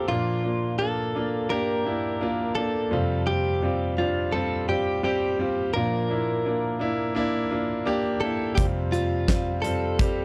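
A clear concert grand piano and a clean electric guitar open together, setting a warm, anthemic piano-driven pop mood in a steady, straight 4/4. The piano carries the accompaniment from its deep bass up into the middle register, its tone smooth, vintage and up front, while the chords alternate between Bb and Fsus2. Above it, the directly recorded guitar plays a compact, picked melody with a compressed feel and a subtle chorus shimmer. At 8.6 seconds a huge arena drum kit arrives, up front, with a fat snare, punchy kick, hi-hat and handclaps carrying a hall sound. The recording otherwise has a dry, close 1970s studio character with small room ambience, and this short section is cut from a longer piece.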